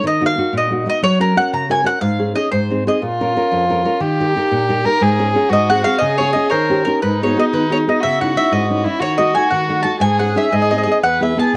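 Heard through worn, warbly cassette tape with a moderate studio reverb, this wistful, passionate Italian folk serenade in a rubato 6/8 at 120 BPM pairs a round, double-string picked mandolin melody up front with bright fingerpicked classical nylon-string guitar accompaniment throughout, while a soft-attacked, airy bowed violin with tape echo floats in as a pure, slightly boxy second line at 3.0 seconds, before the harmony shifts toward a new section at 7.0 seconds in this passage cut from a longer piece.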